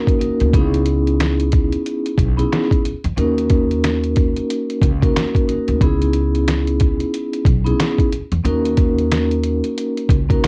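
This boom-bap hip-hop excerpt sets a dark, reflective mood at 91 BPM in 4/4, with a 62% swing on the sixteenths in C# dorian. A vibraphone played with soft mallets carries the accompaniment from the start, its metallic, ringing tone carrying a medium motor vibrato and shaped by high- and low-pass filtering and a cassette-tape coloring. A sampler-style trip hop drum kit of kick, snare and hi-hat sits up front, compressed, pitched down and muffled, with a thumpy kick and a medium-tuned snare. An upright bass enters at 0.4 seconds, plucked pizzicato on gut strings with a woody, acoustic sound in a low register. The harmony moves between D#m7 and C#m9, and the dry, close sound has the feel of a home recording on cassette.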